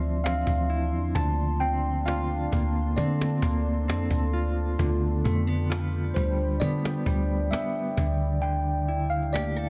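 A clean tine electric piano takes the lead throughout this short cut from a longer contemporary R&B piece, its tone colored by a phaser and heard as if through its own built-in speakers. The mood is moody and sensual at a slow 66 BPM in a straight 4/4, with the harmony moving from Dm9 through Bbmaj13/D and G7/D to a rootless C13/D over a held D. Beneath it, a mellow, dark electric guitar plays fingered, compressed arpeggios treated with tremolo and tape echo, while a deep ambient pad built from detuned sawtooth and sine layers with a sub octave sustains chords through chorus and its own reverb. A boomy, sine-based 808-style bass with a noise layer and fast attack sits up front, and a snappy cajon with snares, struck with hard hands and recorded close and dry, enters at 0.1 seconds. A light reverb lends the whole ensemble a gentle sense of space.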